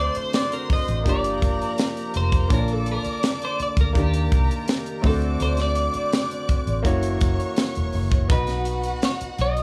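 A slightly broken-up, compressed electric guitar solo with analog chorus and tape echo opens this warm, smooth 1970s-style soul piece at 83 BPM, over close, bowed studio violins with vibrato, a vintage grand piano, a dark, round, foam-muted fingered bass, and a dry funk kit with a high-tuned snare that enters at 0.1 seconds, while a lightly overdriven, percussive tonewheel organ through a slow rotary speaker sits in the background until 8.3 seconds, where the chords move from D7 through Gb7 to a closing B.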